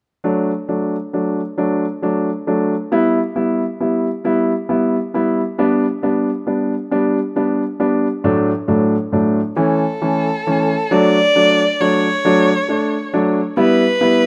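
A slow 6/8 sway at 45 beats per minute, counted in dotted quarters, gives this short pop passage in D major a swaying, heartfelt mood. A concert grand piano carries the accompaniment from 0.2 seconds, its tone clear and natural with a deep bass, sitting up front as it moves through D, E minor, G and D over A before settling on A. At 9.6 seconds a single bowed violin enters with the melody, warm, smooth and even with vibrato, placed just as close as the piano. The harmony then returns to D and on to E minor as the passage is cut off at 14.3 seconds. A moderate plate reverb gives the sound a soft glow, while the mix keeps the rough character of a home demo.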